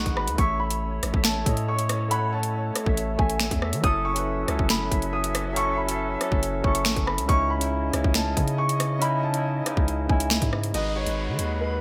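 This drill-style hip hop excerpt moves in a half-time feel with a cold, tense mood. A dark, mellow baby grand piano carries the melody with long sustain and delay, while a clean tine electric piano fills in accompaniment through a lush chorus. Behind them, a pure, vibrato-touched small flute group holds sustained chords from the background, and a deep, sine-like 808-style bass rings out long notes with a fast attack that decays. The electronic drill kit sits up front, pairing a hard-clipped kick and sharp snare with metallic hats, finger snaps and rim clicks under gated reverb, entering at 0.1 seconds. An electronic downlifter sweeps in at the opening and again from 10.7 seconds, where the harmony shifts to G#m7, all within light reverb and a bright 1980s-style digital sheen.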